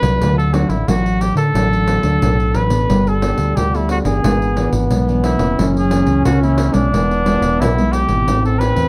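A warm, vintage-toned trumpet leads this short, sunny excerpt of samba and choro, playing a jazz-style solo melody up front with light vibrato, scooped notes and a plate reverb. The tempo sits at 89 BPM in a straight 4/4, and the tuning is slightly below standard pitch, at A4 = 435 Hz. A fingerpicked nylon-string guitar in a classical manner supplies the accompaniment, while a fingered electric bass, amped and placed up front, anchors the low end, and a jingly pandeiro played with soft hands adds an acoustic, live-room sparkle. At 2.9 seconds a close-miked trombone joins with its own jazz-style second line, also touched by light vibrato. The harmony moves from D through Gadd9, E7/G#, F#7 and E before landing on Am, all within a playful mood, a light overall reverb and a dark, warm production.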